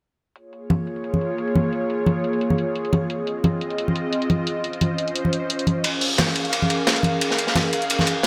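Liquid drum and bass with a melancholic, soulful mood, this excerpt opens at 0.4 seconds with bright, layered, low-pass-filtered electronic hi-hats, joined at 0.6 seconds by an airy, breathy, warbling pad with chorus and a filter sweep, moving through Bbm7, Fm7 and Dbmaj9, while close, up-front congas add a warm acoustic pulse and a gritty, saturated breakbeat kit with dark cymbals and a medium-tuned snare arrives at 5.8 seconds, the whole sitting in a light studio reverb.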